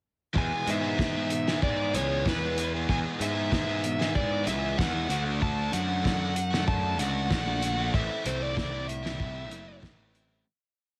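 A growly, fuzz-laden electric bass sits up front in this brief, upbeat indie rock piece, picked through overdrive as it drives a punchy, syncopated riff. Beside it, a double-tracked overdriven electric guitar strums compressed chords from 0.3 seconds, giving the track its jangly lift. A dark, smooth lead guitar, dressed in overdrive, plate reverb and digital delay, spins a motif-based melody in short, sentence-like phrases. The cloth-damped, thuddy acoustic kit plays a straight indie four groove on hi-hat, fat snare and tight kick, its muffled, rolled-off top lending a lo-fi, gritty character. The harmony moves from E to D to A minor, and the single verse fades out from 7.9 seconds to its close at 10.5 seconds.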